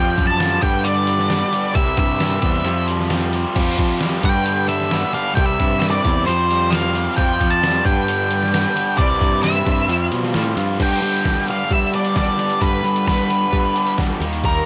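A straight 4/4 pulse at 133 BPM drives this upbeat, wistful indie rock passage in G mixolydian, where a pitched-down, gritty trip hop sampler-style drum kit with a thumpy kick sits up front beside a dark octave-fuzz lead guitar carrying the melody through cassette tape saturation, while a compressed fuzz guitar riff shimmers in the background with lush chorus, a raw, lo-fi garage guitar adds an overdriven riff, and a punchy, direct picked electric bass anchors the cycling Fsus2, G and C chords of this dry home cassette recording until a new section arrives at 10.8 seconds.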